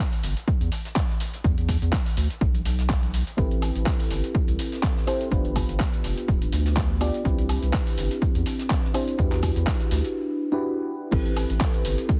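A heavily compressed, radio-like sound with light small-room ambience frames this moody deep house excerpt in A minor, moving at 124 BPM in 4/4 with a 55% swing on the sixteenths. A dusty soul sampler-style kit of cabasa, crash, handclaps, hi-hat and woodblock opens the excerpt with gritty overdrive and 12-bit sampler grit, soon joined by a punchy electronic kick that sits up front and carries the same overdrive and grit. Beneath them, a very quiet, airy big-band kit adds hi-hat, a medium-tuned snare and tambourine. A round, deep analog bass with a nasal edge pumps against the sidechain from the start. At 3.4 seconds a mellow, soft FM electric piano enters with stabs treated by chorus, phaser and analog delay, tracing Am9, G7, Cmaj9 and Em9. A break at 10.2 seconds gives way to a drop at 11.1 seconds that returns to Am9.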